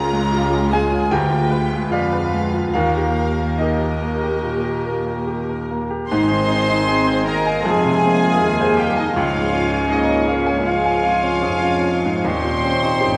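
A clear, up-front baby grand piano with audible action noise carries the lyrical, passionate melody of this romantic classical movement for piano and orchestra in a rubato 4/4, joined by a floating symphonic violin section, a softly bowed sul tasto chamber violin line, very quiet woody violas, rich cellos and distant double basses, until at 6.1 seconds winds and brass enter (a pure flute, a roomy oboe, a dark clarinet, a smooth-topped bassoon, mellow French horns and tight trombones holding sustained chords, bright trumpet stabs and a tuba bass), all set in wet scoring-stage reverb in this cut from a longer piece.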